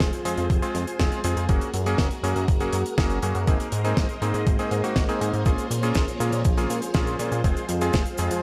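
A straight 121 BPM 4/4 pulse drives this bittersweet, danceable italo disco excerpt in Bb minor, where an overdriven, thumpy electronic kick sits up front (stopping at 8.0 s) beside a dry, damped 70s kit of fat snare, hi-hat and cabasa, while a glossy, evolving chorused synth bass with a plucky pulse-wave edge, clangy, cutting electric grand piano stabs through delay, and a lush, mellow string machine holding sustained chords in the background move through Fm, Gbadd9, Abadd9 and Bbm7 under light reverb.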